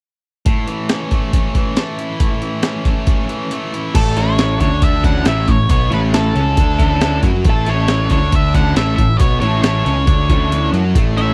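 This is an upbeat, jangly indie rock cut from a longer piece, moving at 137 BPM in a straight 4/4 feel in A major. It opens at 0.5 s with a bright, overdriven picked electric guitar riff over a breakbeat sampler-style drum kit, whose gritty, compressed sound puts a thumpy kick, a high-tuned snare, hi-hat and crash cymbal up front. During a brief break, a fuzz-drenched electric bass with a round, overdriven tone enters at 3.9 s. Moments later it is joined by a dark octave-fuzz lead guitar carrying the melody, with distortion and slapback echo, and a second overdriven guitar riff treated with analog chorus and slapback echo. Near the close, the kick and snare drop out at 10.5 s. The recording is dry and close, with little reverb, in the manner of a 1970s studio.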